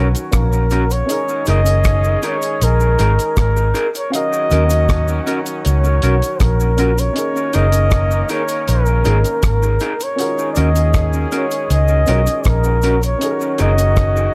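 Sweet and smooth, this short lovers rock reggae excerpt in F# major moves at an easy 79 BPM in straight 4/4, with a breathy, whispered flugelhorn out front carrying the melody with scooped notes and vibrato, trailed by tape echo, over a clear vintage horn section voicing a second line in octaves. A round, foam-muted fingered bass sits up front beneath a dry, cloth-damped drum kit of tight kick, hi-hat and rim click, while a twangy, slightly broken-up guitar plays lo-fi stabs until 13.7 s and an intimate baby grand with audible action noise accompanies in the background. A close cabasa adds quiet texture, and the parts sit in small room ambience as the harmony rocks between D#m7 and F#69.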